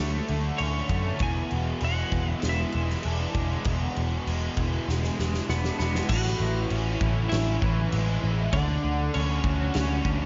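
Shoegaze-leaning dream-pop rock cut from a longer piece, dreamy and hazy in a reverb-soaked hall, where a distorted, double-tracked fuzz guitar riff with analog chorus sits up front beside a dark, foam-muted picked bass, a bright, twangy twelve-string electric guitar carries the melody through subtle chorus and tape echo, and a big acoustic rock kit with a fat snare, punchy kick and bright crash cymbals enters at 0.3 seconds, its fill at 4.9 seconds leading into a new section at 6.1 seconds built on Amaj7 and Dmaj7.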